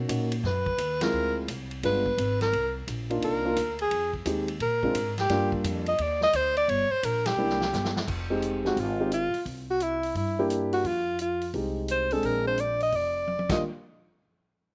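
A clear, close-miked alto saxophone leads this relaxed, playful small-group jazz excerpt in swing and bop style, sitting up front with vibrato, a breathy subtone and scooped notes, touched by a slapback echo. Beneath it, a dark, mellow baby grand piano comps with its own slapback echo, while a woody, growly upright bass is plucked in the low register. The acoustic drum kit has a natural big-room character, with a punchy kick, a medium-tuned snare, ride, hi-hat, crash and toms, and it swings the 4/4 pulse at a brisk 173 BPM. The band hits accents together at 1.0 and 7.2 seconds, and the drums play a fill from 7.4 seconds that leads into a new passage over Fm9, C7 and Bb7 before the harmony settles on Ebmaj7. The sound is dry and open-air, and the clip ends on a short final drum fill as the music breaks off.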